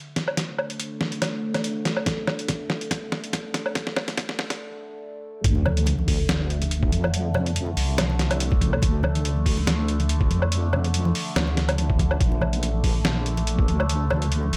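At half-time 142 BPM in 4/4 with a light 16th-note swing, this heavy, cavernous deep dubstep piece in D minor opens its build-up on a gritty, pitched-down trip hop sampler kit of hi-hat, medium-tuned snare and woodblock, set up front over a resonant drone of moving overtones with slow attack, chorus and phaser. A compressed, thumpy electronic kick enters at 2.1 seconds during the drum fill. After a brief break, the drop lands at 5.4 seconds: a dark, detuned wobble bass of sawtooth and sine comes up front with chorus, an electronic sub drop marks the impact in the background, and acoustic congas with a thick skin sit back in a live room, while the chords move from D minor to Bb at 12.2 seconds within a light, digitally ambient reverb.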